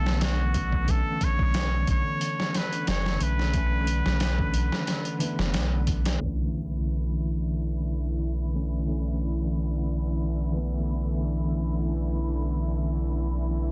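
A dense, heavily limited master with vinyl crackle and a low-pass haze frames this brooding, hypnotic trip hop excerpt. A nasal, straight-muted trumpet with scooped notes and tape echo sings a jazz-style line over a mellow tine electric piano with tremolo, a deep, round analog bass, a gritty, pitched-down sampler-style drum kit and a tense, string-like drone in the background. By 6.2 s the trumpet and drums have dropped away, and a dark, intimate string section playing sul tasto enters under a filter sweep, joined by an electronic impact in the background.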